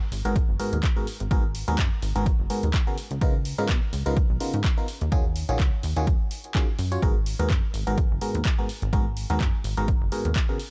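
Piano house with an energetic, soulful drive, where an overdriven, up-front electronic kick and a punchy analog drum machine's handclaps and hi-hat carry a swung groove beneath a plucky, wave-folded analog bass with sidechain pumping and a biting, barking FM electric piano riff coloured by chorus, phaser and delay, moving through G#m9, C#13 and D#m11 in a dry mix.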